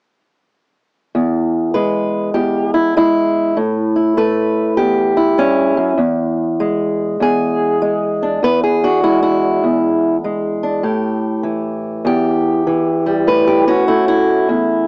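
A fingerpicked steel-string acoustic guitar enters at 1.1 seconds, playing alone in a laid-back, rollicking acoustic country blues at 99 BPM with a swung feel, moving through E, A7 and E7 in E mixolydian. Its dark, boxy parlour tone sits up front, reaching from low bass notes up into the middle register, and light reverb surrounds it. The home cassette recording gives a small-speaker sound to this short excerpt cut from a longer piece, which ends at 14.9 seconds.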